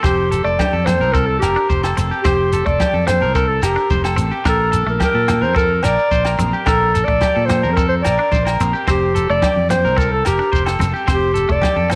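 A smooth, vibrato-laden clarinet leads this sunny, danceable highlife guitar band excerpt in F major at 109 BPM, scooping into its notes in a jazz style over a slightly broken-up guitar playing arpeggios through tape echo and a bright, clean twangy guitar set back in the mix. A round, punchy fingered bass and a dry compact cocktail kit of hi-hat, kick and rim click carry the straight 4/4 feel. Ringing agogo bells, vintage medium-tuned congas and a grainy shekere entering at 0.1 s sit in the background, and a moderate echo chamber reverb lends a roomy sheen as the chords move from Fsus2 to Bbmaj7 and back.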